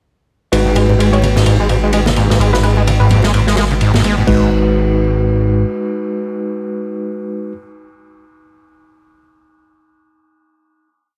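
A funky, swaggering breakbeat piece at 128 BPM in G# minor with a 16th-note swing, where a squelchy, screaming distorted acid line loops its seven-step riff against the bar over a fat, detuned analog bass, tremolo-laced tine electric piano stabs on G#m7, a crunchy small-room drum kit, very quiet ringing bongos and congas, and a hollow square pluck in the background, before the breakdown gives way at 4.3 seconds to a final chord where the electric piano rings on until 7.5 seconds.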